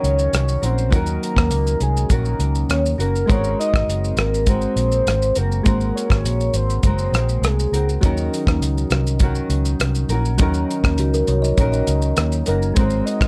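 A straight 4/4 groove at 101 BPM, driven by a dry, damped 70s drum kit of hi-hat, tight kick, rim click and shaker and a round, foam-muted fingered bass up front, carries this lonely, wistful indie and bedroom pop piece in Eb dorian, where bright, fingerpicked nylon-string guitar with subtle chorus and warbly pitch drift and gentle electric-piano-like synth keys with phaser and cassette-tape colour move between Ebm7 and Ab9 beneath a full-bodied, octave-layered synth lead with vibrato, lush chorus and analog delay that sings until 7.9 s and returns at 12.5 s, while a woody, ringing kalimba with its own delay adds a brief second line from 11.0 s, all set in light reverb with a dark production.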